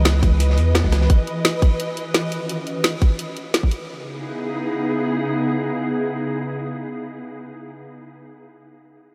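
Liquid drum and bass at 172 BPM in C# minor, soulful and rolling, this dreamy, reverb-soaked fragment opens on a glassy FM pad with chorus and pumping sustained chords moving from C#m9 to D#m9, over a deep sine 808-style bass that sounds only until 1.1 s. A gritty, saturated breakbeat kit with a dark, rolled-off top sits in the background at the start, as a layered electronic kit with a woody snare, bright hats and rim clicks joins alongside a tight, up-front kick. Both of these drop out near 3.8 s, leaving the ethereal pad alone to hang in a huge ambient space until 7.4 s.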